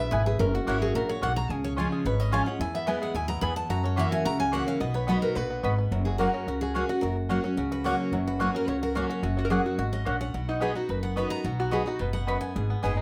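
Lively and virtuosic, this straight-feel bluegrass excerpt opens with a bright, picked steel-string acoustic guitar solo running to 5.9 s, while a twangy fingerpicked banjo with slapback echo also carries melody and a mellow double-strung mandolin adds stabs. Underneath, a full-bodied rhythm guitar with audible finger squeak sits up front beside a growly, thumpy pizzicato upright bass. At 9.4 s a metallic, nasal lap resonator guitar slides in with a second line, all within a moderate studio reverb.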